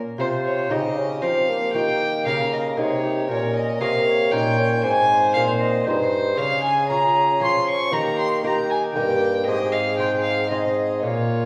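A delicate fingerpicked lute opens this short cut from a renaissance-style consort dance. Its double nylon strings, some doubled at the octave, sound alone for a moment before the rest of the ensemble enters at 0.2 seconds. The dance moves in a straight 3/4 at 116 BPM with a rustic, solemn mood. A single period-style violin carries the melody up front, with a dark, reedy gut-string tone and a slightly distant quality. Beneath it, a rich, nasal viola with light vibrato plays a second line that sits further back in the mix. Two bassoons fill out the lower parts: one plays a dark accompaniment and the other, warm with light vibrato, holds the bass. The harmony passes through C minor, E-flat, B-flat minor, A-flat and D-flat. The group sounds as if it were recorded in a church or concert hall, with a wet recital-hall reverb of about 1.5 seconds that carries the music to its cut-off at 11.5 seconds.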